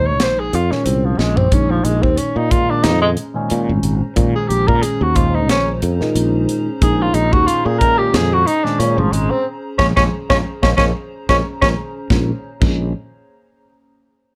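Electric jazz fusion in Bb minor at 91 BPM, this nocturnal, driving fragment from a longer piece sits in 4/4 with a light 16th-note swing and opens on a Bbm9 chord. A breathy tenor saxophone takes the solo from the start, up front and intimate, its mellow subtone colored by vibrato, soft attacks and scooped notes. Beneath it, a barky tine electric piano, lightly overdriven through a combo amp with phaser, comps in the background, while a growly, bright fretless bass sustains low notes and a crisp, polished drum kit with a high-tuned snare and punchy kick enters at 0.2 seconds, adding fills around 1.2 seconds and again near the end. At 2.8 seconds a warbling, lo-fi pad fades in quietly with detuned, nostalgic chords washed in chorus, phaser and its own reverb. The band hits accents together from 9.5 seconds as the saxophone line closes out, all set in a moderate studio reverb.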